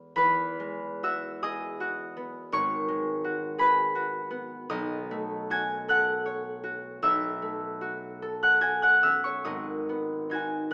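A wet recital-hall reverb with a 1.5-second decay surrounds this recording, though the overall sound carries the quality of a small speaker. It is a short classical passage for solo concert harp, cut from a longer piece, in E major with a graceful, serene mood. The music moves in 6/8 at a slow 44 to 57 beats per minute counted in dotted quarters, with a free, rubato feel, and the harp is tuned slightly low to A4 = 439 Hz. The fingerpicked harp sits up front with a warm, ringing tone, spanning a broad register from G#1 to G#6 across its 10.7 seconds. Its harmony drifts from Emaj9 through G#m7 and B9 to B9sus4 before settling back on G#m7, giving the passage a gentle, floating color.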